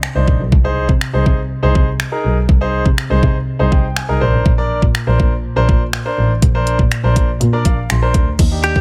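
Dance-pop with a driving, confident feel, this short cut from a longer piece rides on an up-front electronic drum kit, its overdriven, knocking kick layered with crash cymbal, hi-hat and finger snaps. A bowed double bass, smooth and boxy with vibrato, and an intimate concert grand piano with audible action noise and long sustain both carry sidechain pumping, the piano adding fills at 3.5 and 7.4 seconds over chords moving from Cmadd9 through Ab to Bbadd9. At 8.6 seconds a bright, twangy clean electric guitar, picked and recorded direct, enters on a single note, all in a dry mix with little reverb.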